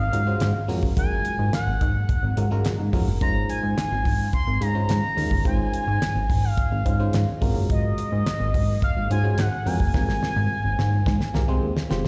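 A glossy, dark synth bass, detuned and chorused with a filter sweep, sits up front in this feel-good, smooth slice of early-eighties boogie funk at 107 BPM in straight 4/4, tuned to A4 = 437 Hz. A dry, damped 70s kit with a fat snare, tight kick, hi-hat and handclaps drives it, while a glassy, bell-like FM electric piano and a swirling, very quiet phased string machine carry lush Gbmaj9, Dbmaj9/Ab and Abmaj13 chords. A sawtooth-and-triangle lead sings with vibrato, ring modulation, chorus, and slapback and tape echo; the whole cut sounds like a live gig heard through the venue's PA in recital hall reverb, closing with a drum fill from 9.9 seconds.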